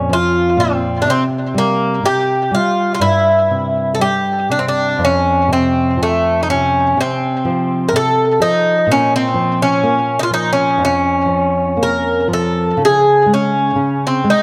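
Longing and mournful, this fado-style ballad excerpt moves in a rubato two-beat feel, with a picked Irish bouzouki carrying the melody in a mellow, metallic double-string voice touched by analog delay. Beneath it, a classical nylon-string guitar, thumb-plucked on old strings, gives a woody accompaniment, and both instruments sit up front throughout. Close, detailed microphones capture the pair in a moderate recital-hall reverb, and a new section begins at 12.8 seconds before the clip ends at 14.4 seconds.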